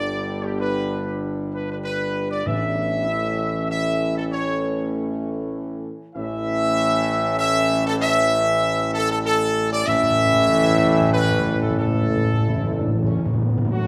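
A majestic, solemn classical fanfare in 3/4 at 97 BPM opens with the full brass: a clear trumpet section carries the melody up front with light vibrato, over sustained chords from a bright trombone section and a mellow French horn section set back in the background, with a warm, soft-edged tuba anchoring the bass. The harmony moves from G to A at 2.5 seconds, where the timpani, played with medium mallets, make a brief first entry before returning for a fill from 9.9 to 13.7 seconds. A moderate scoring-stage reverb gives the ensemble a ceremonial sense of space in this passage taken from a longer piece.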